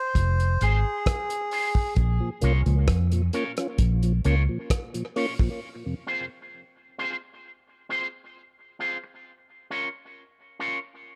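A round, foam-muted electric bass sits up front in this heavy, hypnotic dub reggae excerpt at 66 BPM in F minor, joined by a cloth-damped, gritty drum kit of kick, hi-hat and rim click, a mellow tonewheel organ with chorus vibrato, a slow rotary speaker and tape echo, and a reedy, breathy melodica that plays a brief phrase before the break at 2.0 seconds, after which a bright, twangy envelope-filtered guitar with tape echo carries on alone from 5.9 seconds until 10.8 seconds over Fm and Bbm chords in a small room.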